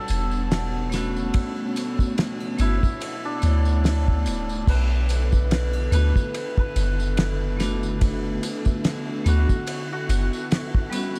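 A shimmering hammered dulcimer melody with dub echo opens this melancholic, hypnotic trip hop excerpt at 72 BPM in B minor over a warbly, nostalgic tape-like pad and a faint, flickering grainy texture, joined at once by a deep, round 808-style bass with tube saturation, a cloth-damped, thuddy drum kit with a fat snare and dark cymbals, and background tambourine and triangle, while a bright, ringing hard-mallet vibraphone with tape echo and harmonic tremolo enters at 0.9 seconds under a filter sweep that runs until the harmony settles on Bm7 at 4.7 seconds, all set against a swung groove and a haze of vinyl crackle.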